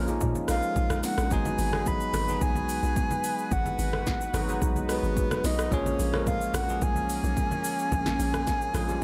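Amapiano at 109 BPM in G# dorian, this deep, late-night excerpt from a longer piece moves through A#m7 and G#m7 chords over a straight 4/4 pulse. A hollow, bouncy log drum bass with a fast attack and mellow decay anchors the low end, while a deep house drum kit enters at 0.1 seconds with a deep kick, punchy snare, metallic hats, rim click and shaker, overdriven and sitting up front with the sound of a large room. Low-tuned, ringing congas played with soft hands add close, dry percussion in the background. A bell-like tine electric piano supplies bright, clean accompaniment through a phaser, and a vintage analog pad holds smooth, warbling chords with chorus and sidechain pumping further back. From 0.5 seconds a breathy, flute-like synth lead carries the melody up front, its soft attack, vibrato, chorus and delay floating over a digital ambience.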